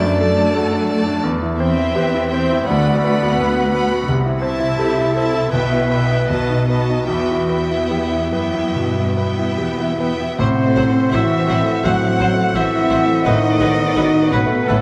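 Tragic and passionate, this romantic movement for piano and orchestra is cut from a longer piece and unfolds in 4/4 with a flexible, rubato feel. A clear, open concert grand sits up front carrying the melody, its deep bass reaching down low, while a rich, expressive violin section shares the melody high above and a second violin section with vibrato adds a bowed second line. A mellow clarinet contributes another second line, a lush viola section with portamento fills in the accompaniment from the background, and a dark, intimate cello section underpins everything with a soft-attacked bass. At 10.4 seconds the harmony darkens toward a diminished chord, and new colours join: a solo oboe with light vibrato and a hollow, airy flute add second lines, a French horn section supplies sustained chords, and a distant double bass section deepens the bass. The whole ensemble sits in a wet concert hall reverb that lends the sound a spacious, resonant depth until the excerpt ends at 14.8 seconds.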